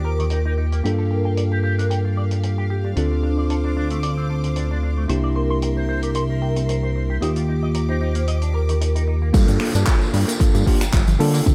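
A swung sixteenth-note groove in 4/4 drives this sensual, sleek nu-disco excerpt. A tight funk kit from a small, natural-sounding room slips in at 0.2 seconds with finger snaps, handclaps, hi-hat and tambourine, all softened by low-pass filtering and trailed by analog delay. A fat, detuned sawtooth bass sits up front, while a bell-like tine electric piano comps with sidechain pumping and delay, and a clear, earthy violin section holds close, bowed chords with light vibrato, pumping beneath. A dark, ringing vibraphone carries the melody in the background, and a bright, twangy electric guitar with an envelope filter, lush chorus and echoes plays a picked riff through a filter sweep. The vibraphone fades out at 9.1 seconds, and at 9.3 seconds the drop arrives: the guitar gives way to a punchy, layered electronic kick, very quiet unison pluck arpeggios with a moving notch, and a downlifter in the background. 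The echo-heavy mix is finished with light studio reverb.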